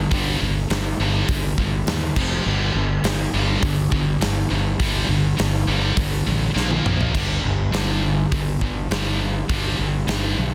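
A straight, driving 4/4 pulse anchors this short, menacing hard rock cut from a longer piece, heavy and relentless from its first beat. A scooped, high-gain guitar riff, double-tracked, picked and distorted with a bright, biting edge, sits up front and moves through G5 and F5 power chords before landing on Bb5. Beneath it, a fingered electric bass with fuzz and overdrive adds a growly low end, equally forward in the mix. A huge arena drum kit with a pumping room sound, punchy kick, medium-tuned snare and bright cymbals pounds along, with crash, hi-hat and toms all in play. A drum fill from 6.6 to 7.1 seconds pushes into a new section that returns to G5 and carries through to the end at 10.5 seconds. The dry, dense and heavily limited modern master keeps every hit close and crushing.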